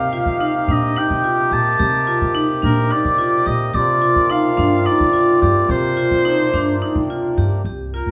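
A straight 7/8 pulse at 215 BPM in eighths drives this hypnotic, pensive piece of contemporary chamber music, an excerpt that moves from Cm7 to Bbadd9 at 3.7 s. A warm oboe with light vibrato carries the melody up front with a roomy, classical air, while a mellow, distant clarinet plays a second line until 7.3 s and a close-miked, reedy pedal harmonium breathes full, dry sustained chords. A bright, ringing vibraphone struck with medium hard mallets and motor vibrato spins arpeggios over a woody, thumpy pizzicato upright bass on gut strings, and the ensemble sits in a moderate recital hall reverb.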